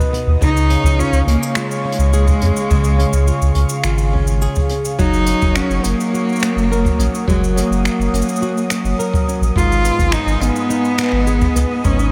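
A boomy, brushed kick and a brush kit of cabasa, finger snaps and hi-hat set a straight 4/4 pulse at 105 BPM in this wistful, autumnal folktronica passage, cut from a longer piece. A fingerpicked flamenco guitar plays delayed arpeggios from the very start, its finger squeaks audible, over a smooth, dark sawtooth pad that sustains chorused chords. A deep, round sine sub bass sits up front, and at 0.4 s a close, bowed cello, played by a single player, takes the melody with expressive vibrato, portamento and a touch of delay. The harmony moves from C# to F# and then G#m. At 5.7 s a grainy, flickering granular texture arrives in the background. The whole mix is soaked in a huge, dreamy ambient reverb.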